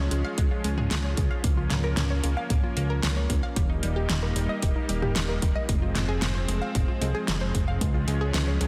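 A lush, detuned sawtooth pad with chorus and sidechain pumping opens this driving, nocturnal synthwave excerpt at 113 BPM in Bb dorian, alongside a punchy unison pluck playing delayed arpeggios and a fat, up-front analog bass with ring modulation and a filter sweep. The pop drum kit, with its fat snare and metallic hats, joins at 0.1 seconds, and a layered electronic kick follows at 0.4 seconds, both sitting in studio reverb. Chords move from Db through Bbm/Db, Eb and Fm back to Db, all set in a lush hall ambience and a dense, heavily limited modern master.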